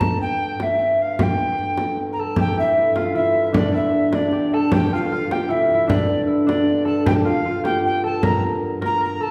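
An airy alto recorder with a woody chiff leads this ancient, driving medieval dance in G dorian, its tongued, expressive melody carrying vibrato over a reedy, breathing harmonium drone and a close, dry frame drum played with hard hands. The piece moves at 102 BPM in a straight 6/8, and at 2.2 seconds a mellow concert harp enters with a fingerpicked, ringing second line. A wet recital hall reverb places the listener further back in the room, in this fragment cut from a longer piece.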